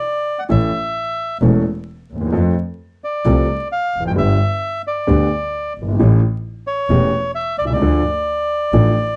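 A rubato 4/4 pulse carries this sultry, melancholic tango fragment, cut from a longer piece, as a reedy, dark bandoneon opens the melody alone with a smooth, up-front tone and plate reverb. At 0.5 seconds a warm concert grand piano enters with open, deep-bass accompaniment, joined by a single bowed double bass that sounds biting, nasal and earthy, with an airy bow and light vibrato. The dark production adds vinyl crackle and moderate studio ambience as the harmony passes through A, F, G and A7 before settling on Dm.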